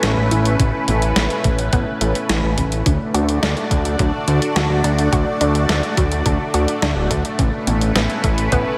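Synthwave at 106 BPM in D major, romantic and uplifting, this short cut from a longer piece moves from Aadd9 to D at 2.9 seconds and back to Aadd9 at 7.4. A lush, detuned sawtooth unison pad with a sub octave holds sustained chords up front through chorus, phaser and sidechain pumping, while a fat, thick analog bass with a filter sweep anchors the low end and a round, nasal, wave-folded pluck traces arpeggios in the background through chorus and delay. A clean 12-bit drum machine supplies hi-hat and a medium-tuned snare, joined at 0.6 seconds by a thumpy electronic kick, both tape-warmed and re-recorded in a large room, with light reverb and digital ambience around the mix.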